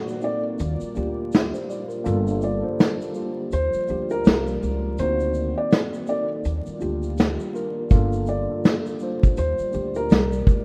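Up front, a vintage brush drum kit with a smooth, rolled-off top and a tight kick carries this melancholic, reflective lo-fi hip hop excerpt at 82 BPM, its brushed snare, hi-hat and shaker riding a lazy swung sixteenth feel and a touch of 12-bit sampler grit. A soft, felt-muted upright piano sings the melody through tape echo from 0.2 seconds, over a mellow tine electric piano with cassette-tape color and a deep, detuned analog pad with chorus sitting in the background. A woody pizzicato upright bass joins at 0.6 seconds, all set in plate reverb and vinyl crackle with a rough home-demo character as Ebmaj9, Gm9 and D7b9b13 chords circle.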